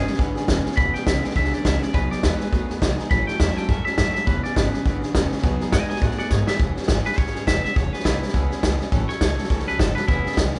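A rowdy, retro rockabilly excerpt with a light swing at 206 BPM in E major, with a bright, twangy, clean electric guitar carrying the melody over a full-bodied picked steel-string acoustic guitar and a slightly broken-up electric guitar riff that sits in the background until 6.6 seconds. A woody, thumpy pizzicato upright bass stays low in the mix while the up-front vintage kit of punchy kick, medium-tuned snare and hi-hat with a rolled-off top drives everything, throwing a drum fill at 6.3 seconds before the clean electric guitar takes a solo. The band sounds like it is playing live together in a large studio room with moderate reverb and a top end that tops out around 10.6 kHz.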